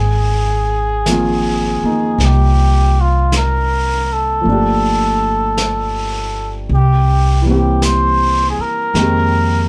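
A veiled, cup-muted trumpet with light vibrato carries the melody of this intimate, late-night jazz ballad in Ab major at a slow, swung 53 BPM over woody pizzicato upright bass, with a concert grand piano, its action noise audible, and a distant, roomy brush drum kit entering at 1.1 seconds in a dry sound.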